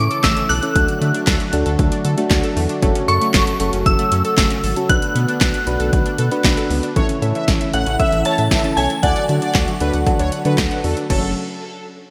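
A shimmering FM bell carries the melody from the start, its bright, dreamy tone trailed by ensemble chorus and digital delay, over a driving, melancholic synth-pop groove at 116 BPM built on a punchy, overdriven analog drum machine with kick, snare, handclaps, hi-hat and crash, and a round, deep analog bass. Soft electric-piano-like synth keys, a brassy, airy analog pad and a vintage, warbling analog pluck playing arpeggios fill in behind, moving through A, D, F#m and Bm7, before a fat, nasal analog synth brass line enters at 7.0 seconds. The bright 1980s-style digital production sits in a lush hall reverb, and this cut from a longer piece ends as it lands on F#m.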